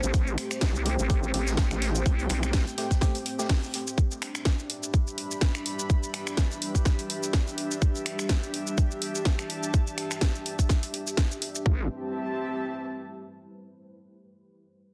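A nasal, resonant vowel-sweep wobble bass with overdrive and sidechain pumping opens this gritty, aggressive bass house excerpt at 125 BPM in A minor, dropping out at 2.6 s, while a tight up-front electronic kick, a garage drum kit of cracking snare, hi-hat, shaker and finger snaps, a very quiet vintage kit that stops at 3.9 s, a hollow percussive organ stab with tape echo, a dark detuned ambient pad under a filter sweep and an airy, breathy pad that carries on alone to 13.5 s fill out a dense, heavily limited mix over Am7 and G6.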